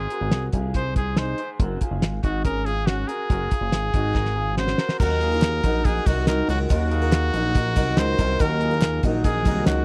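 Jangly indie pop with a restless, bittersweet mood, cut from a longer piece and captured as a dry, close 1970s-style studio recording with small room ambience. A present, up-front trumpet carries the melody over twangy, slightly broken-up electric guitar arpeggios, a glossy, nasal chorused synth bass and a cloth-damped, thuddy drum kit with a fat snare and dark cymbals, which plays a fill leading into a new section at 5.0 seconds. There a shimmering, octave-doubled twelve-string acoustic guitar joins, hollow group handclaps follow in the background shortly after, and a swirling, very quiet phased string machine adds sustained chords from 8.4 seconds.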